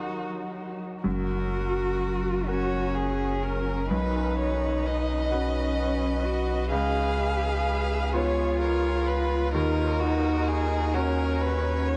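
A rich, smooth cello sits up front in this tender, hopeful neoclassical piece for piano and strings, carrying a second line beneath a distant violin melody sung with vibrato. Set in F# major and 6/8 at 42 BPM in dotted quarters, the music moves with a rubato feel, and the chords pass from D#m to F#, Badd9, C#7 and D#m7 in this brief slice of a longer work. A bright, worn upright piano with a woody, slightly detuned character supplies the accompaniment, joined by a clear, focused viola that stays in the background. From 1.1 s a deep, saturated sine sub bass enters up front with a fast attack and sustained, thick tones. The violin and cello trail a diffuse ambient delay, and a huge 8.3-second reverb soaks the whole mix in a dreamy haze with its top end gently rolled off, all tuned to A4 = 439 Hz.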